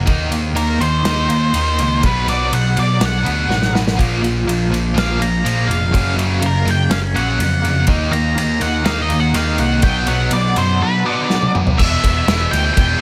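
Quiet-loud alternative rock with a brooding, angsty mood, cut from a longer piece, moving in a half-time feel as a dark octave-fuzz lead guitar carries a distorted, delayed solo melody over a scooped high-gain riff guitar, a growly, punchy overdriven bass up front and a loose indie drum kit with a tight kick and pumping small-room sound. In the background, a clean, twangy guitar plays arpeggios with tremolo and digital delay, and a bright overdriven rhythm guitar joins the riff at 4.0 seconds. The chords cycle through Eb5, Bm, Bb and F#, drum fills mark the phrase ends, and a brief new section lands on E5 at 11.8 seconds under light reverb.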